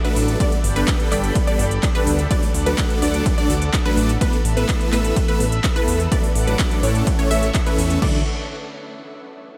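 A lush, warbling unison pad, a bright detuned pluck playing arpeggios in the background, and huge phaser-washed supersaw chords open this triumphant, uplifting festival progressive house drop at 126 BPM in D major, all three breathing with sidechain pumping while a crisp, tape-warm big-room kit of hi-hats, handclaps, ride and crash cymbals drives a straight 4/4. A fat, tube-saturated analog bass enters at 0.2 seconds and a punchy, overdriven kick sits up front from 0.4 seconds, as the chords move from Gadd9 through D and Asus2 to D/A and A before landing on D. Light reverb and drums re-recorded in a large room give this cut from a longer piece its sense of space.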